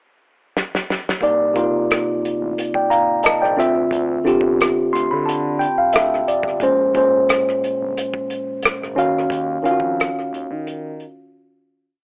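Through a lo-fi, telephone-thin cassette haze with moderate studio reverb, this short late-night neo-soul R&B piece at 89 BPM opens with a drum fill on a dry, tight soul kit. A worn, slightly out-of-tune tine electric piano with phaser then enters at 1.2 seconds, pushing spread-voiced chords from Cm9 through Dm9, Bbm9 and Ebm9 and adding a short fill at 4.6 seconds. A smooth, gliding sawtooth synth bass with vibrato and portamento sits beneath it, and everything fades out from 9.3 seconds to a closing break.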